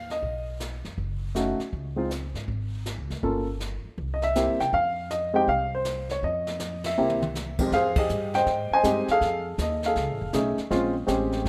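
Moody and cool, this swinging jazz piano trio clip in F minor moves at 160 BPM in 4/4, with a warm, intimate baby grand carrying the melody up front, its short sustain and audible action noise close at hand, over a woody pizzicato upright bass. A brushed drum kit with dark cymbals and a boomy kick comes in at 0.1 s, and a band accent at 6.8 s and a brief drum fill lead into the second section at 7.7 s, where the harmony turns to Fm9 and F7#9 before landing on Bbm9. The moderate plate reverb gives the rough home demo mix a studio sheen, and the clip is cut from a longer piece.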